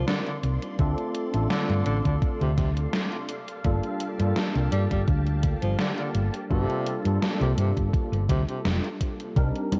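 Heard through a cassette-tape haze with light reverb and digital ambience, this woozy vaporwave fragment pairs a close-miked tenor saxophone's jazz-style solo, clear with vibrato and tape echo, against a bright tine electric piano with chorus and tape echo, silky string-machine chords set back under phaser, an up-front round hollow-body bass, and an overdriven 80s drum machine of congas, hi-hat and gated snare joined at 0.8 seconds by a thumpy overdriven electronic kick.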